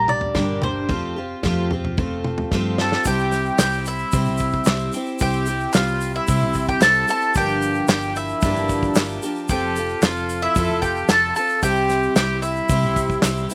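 Anthemic and uplifting, this indie folk excerpt moves at 112 BPM in a straight 4/4, set in C mixolydian. A woody, double-strung mandolin carries the melody over a shimmering, octave-doubled twelve-string acoustic guitar that sits up front, while a dark, round hollow-body electric bass anchors the low end. A fingerpicked steel-string guitar is barely audible under the opening and stops at 0.9 seconds. The loose drum kit, with its tight kick and medium-tuned snare, plays a fill from 2.5 seconds that carries the music into the second section at 3.1 seconds; during that fill, at 2.8 seconds, a distant, classical-style trumpet with vibrato and slapback echo enters as a second line. A grainy tube shaker and crisp group handclaps, which arrive at 3.6 seconds, sit in the background as the chords move through C, Gm7 and F. The recording was made outdoors and sounds dry, with little reverb.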